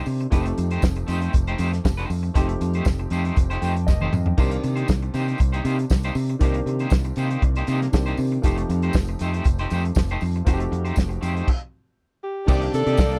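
A tight soul drum kit with dark cymbals drives this danceable disco excerpt up front alongside a bright, punchy fingered electric bass, while a twangy, slightly broken-up electric guitar with tremolo and an intimate concert grand piano with audible action noise fill in the accompaniment over a jingly tambourine in the background, with a piano fill at 3.4 s, a drum fill at 3.9 s and a full stop at 11.5 s. During the stop a breathy alto saxophone enters at 12.2 s, and a lush, bowed violin section follows at 12.5 s, just as the recording cuts off.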